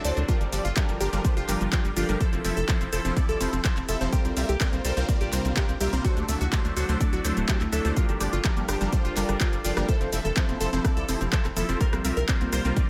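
Dreamy and bittersweet, this progressive house cut moves at 125 BPM in G dorian, cycling through Gm7, Fmaj7, C7sus4 and D7 as a very quiet, morphing wavetable pad holds sustained chords beneath glassy, crystalline pluck arpeggios soaked in chorus and tape echo. A punchy supersaw stab with phaser and a tight, dark sequencer bass both pump against the sidechain, while a house kit of cabasa, handclaps and hi-hat rides alongside an up-front, punchy electronic kick that enters at 0.3 seconds. At 8.2 seconds an overdriven rim click and congas slip in at the back of a digital ambience.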